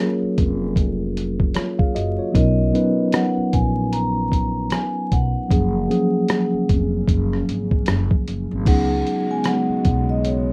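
Mellow and nostalgic, this lo-fi hip hop excerpt, cut from a longer piece, moves at 76 BPM in 4/4 with a swung sixteenth-note feel in F# major. A vibraphone played with soft mallets, its motor off, carries the melody with a ringing, metallic tone, while a clean tine electric piano sits up front with accompanying chords, the harmony shifting from F#maj7 to Bmaj7 and back before settling on C#7sus4 at 8.7 seconds. A pizzicato upright bass enters at 0.2 seconds, woody and growly with a brilliant steel-string edge. The sampler-style drum kit arrives at 0.4 seconds, compressed, pitched down and muffled, with a thumpy kick, hi-hat, rim click and crash cymbal that sound re-recorded in a small room. At 6.6 seconds a dark, warbling tape-like pad with a slow attack and long release fades in behind the others, detuned and ring-modulated, with chorus and its own reverb. Light reverb and vinyl crackle give the whole a rough home-demo character.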